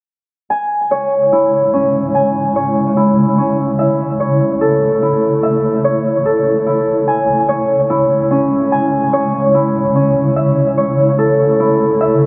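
Dark and cold, this short hip hop excerpt moves at 146 BPM in 4/4 with a half-time feel, sitting in C# minor. A fingerpicked Celtic harp opens at 0.5 seconds, its ringing, acoustic arpeggios up front and trailed by tape echo. At 1.2 seconds a granular cloud pad joins with sustained chords, its blurred, detuned tone slow to bloom and evolving through a moving notch, carrying its own built-in reverb and a subtle chorus. The harmony alternates between C#m and A, and both parts play through to the end at 12.3 seconds. A huge ambient reverb with a long tail and a low-pass filter soak the mix in a dreamy, hazy space.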